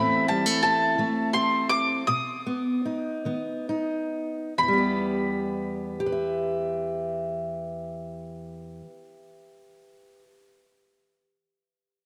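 Wistful and reflective, this short folk excerpt in a straight 6/8 feel pairs a round, double-strung mandolin carrying the melody high up with a fingerpicked steel-string acoustic guitar spanning a broad register beneath it, both close and up front. The opening stretch slows as the harmony moves from A minor to B, settling onto E minor at 4.6 seconds, and the mandolin stops at 8.8 seconds while the guitar rings on to 10.4 seconds. A lush plate reverb with a long tail wraps the pair in a spacious glow.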